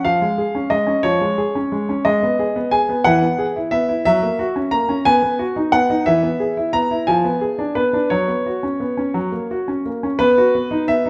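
A warm concert grand piano sits up front in a wet recital hall, its deep bass and smooth, vintage tone ringing into a reverb that lingers for about 1.6 seconds. This is an elegant, graceful classical-period piano sonatina in B major, moving in 6/8 at 59 dotted-quarter beats per minute with a rubato feel. The piano plays solo from start to finish, ranging from E3 up to A#5. Its harmony travels from Db/F through G#m, E and F#7 before settling on B, then returns to E and passes through a diminished seventh and an F#sus4 that resolves to F#. The passage, cut from a longer piece, closes on a B chord at 10.2 seconds.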